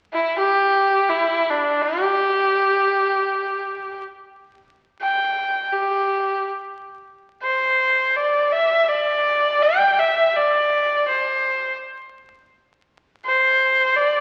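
Unfolding in free time, this pastoral, graceful passage of Chinese traditional music, cut from a longer piece, features a single solo erhu, clear and earthy with light vibrato, portamento and an airy bow, placed close and up front in a wet recital hall reverb, all heard through the crackle of a very old 78 rpm record, with its second section arriving at 6.7 seconds.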